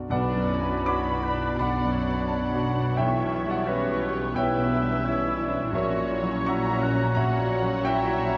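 In a rubato 4/4, this tragic, passionate romantic excerpt for piano and orchestra puts a clear, open concert grand piano up front with the melody, its deep bass ringing beneath a veiled, con sordino violin section that shares the tune while a second muted violin section, an airy flute, a warm clarinet and a distant oboe weave second lines. Dark, muted violas and cellos, lush double basses and a mellow, very quiet French horn section supply accompaniment, sustained chords and bass as the harmony moves from Bm through C#m7b5/B to F#7/A#. Round, soft-mallet timpani sound only from 0.1 to 1.2 seconds, and a moderate scoring-stage reverb gives the ensemble a roomy depth.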